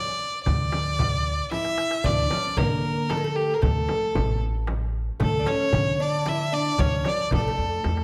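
A single bowed violin leads this festive, passionate Arabic maqam ensemble from the opening moment, its rich, smooth, even tone sitting up front with vibrato as it carries the melody between G4 and E5. The piece moves at 114 BPM in a straight 3/4, with a crisp metal-shell darbuka played with soft hands, kept close and dry in the background. At 0.5 s a thumpy, gut-strung upright bass enters, plucked pizzicato with a dark, woody sound, alongside a deep, large frame drum that carries its own small-room character. The fretless oud joins at 1.5 s with a plectrum-plucked second line, its double strings giving a warm, acoustic voice in the middle register. A drum fill marks the move into a new section, and a moderate recital hall reverb surrounds the ensemble in this excerpt from a longer piece.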